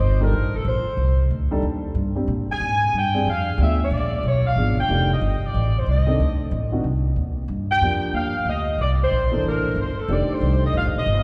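Joyful and energetic, this short cut from a longer big band swing piece moves with a bright swung feel in four. A mellow saxophone section carries the melody from the start, its tight ensemble sound touched with light vibrato and set up front, yet with a distant, roomy quality. Beneath it, a pizzicato upright bass gives a woody, thumpy pulse that sits prominently in the mix. A warm grand piano with long sustain fills in the accompaniment, entering at 0.2 seconds over a progression that moves from F13 through diminished and dominant colours back home to F13. The whole performance is bathed in a lush church reverb, giving the swing band the spacious resonance of a large hall.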